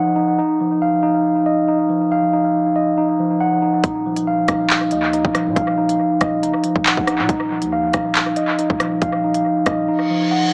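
A mellow tine electric piano leads this short, ominous drill cut, playing arpeggios over an Ebmadd9 chord from the start, sitting up front with a clean, warm tone and an analog delay trailing its notes. At 3.8 seconds an electronic drill kit enters up front, with a hard-clipped kick, crisp hi-hats, handclaps and rim clicks, also sent through analog delay. A hard-hitting 808-style bass arrives alongside it, heavy and punchy, a sine tone with a noise layer, fast attack and decaying notes, set back in the background. The groove moves at 139 BPM in 4/4 with a half-time feel in Eb minor. Within a silent gap that opens at 9.9 seconds, an electronic reverse cymbal rises at 10.0 seconds as the piece cuts off. Moderate plate reverb and an echo-heavy, small-speaker mix lend the whole a dark air.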